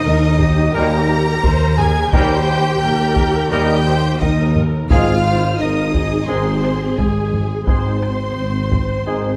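Epic and dramatic, this short cut from a longer cinematic orchestral score moves at a steady 86 BPM in a straight 4/4, with its harmony shifting from Eb to Ab at 4.9 seconds. A lush violin section carries the melody high above, smooth and even with vibrato, while a second violin line sits softly in the background alongside a pure, crisp-edged concert flute that sounds distant yet expressive. Violas with portamento fill in the accompaniment, and a woody double bass section, expressive cellos and a mellow, soft-attacked tuba anchor the low end. A taiko ensemble struck with hard sticks drives the rhythm from 0.4 seconds, and from 0.7 seconds a very quiet, roomy French horn section and a tight, vintage-toned trombone section hold sustained chords while a mellow solo trumpet adds stabs from the background. A moderate scoring-stage reverb gives the orchestra a grand, spacious setting.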